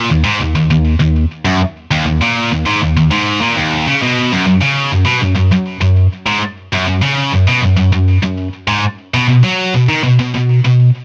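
A scooped, high-gain electric guitar, bright, distorted, picked and double-tracked, plays alone up front for the full 10.9 seconds of this heavy, dark metal excerpt, ranging from Eb2 to F#3 in straight 4/4 with light reverb and a dark, warm production.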